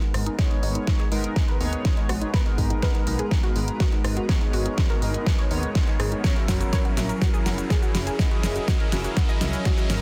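Expansive and bittersweet, this excerpt of progressive house at 123 BPM in G# minor builds over a G#madd9 chord moving to F#7 at 6.2 seconds, as a shimmering, ethereal ambient pad sustains chords in the background under a filter sweep, a round, warbling analog pluck spins detuned arpeggios through chorus and delay with its own sweep, a glossy chorused polysynth punctuates with retro stabs, and a funky, plucky analog bass pumps against the sidechain, while a punchy, up-front electronic kick enters at 0.4 seconds and an overdriven pop drum kit with a deep snare, cabasa, hi-hat and rim click plays a running fill, and a very quiet riser creeps in from 3.4 seconds, all within a dense, heavily limited mix with light reverb.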